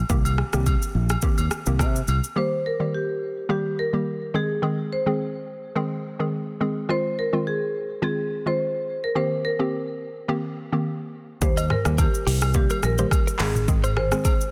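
Dry, dense and tightly limited, this sunny, breezy afrobeats excerpt at 106 BPM in Eb major rides on a hollow, bouncy square-wave pluck with chorus, while a punchy fingered electric bass, an electronic drum kit with deep kick and metallic hats, and soft agogo bells and woodblock open the groove, drop out when a dark, smooth marimba melody with delay enters at 2.4 s, and return from 11.4 s as a clean, picked electric guitar riff with tremolo and delay joins in the background at 11.6 s.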